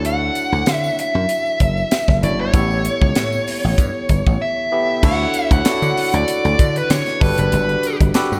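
A dark, overdriven lead guitar carries the melody up front in this breezy, urban slice of polished 1980s jazz-funk pop, set at 96 BPM in D major with a light swing on the sixteenths. Beneath it, a bright, punchy thumbed slap bass and a tight funk drum kit with a high-tuned snare, hi-hat, kick and crash drive the groove, while a barky tine electric piano through a combo amp, dressed in lush chorus, accompanies over Dmaj7, A7, Dmaj9 and Gmaj9 chords. A very quiet, jingly tambourine adds sparkle, and a moderate concert-hall reverb gives the short clip a spacious, glossy finish.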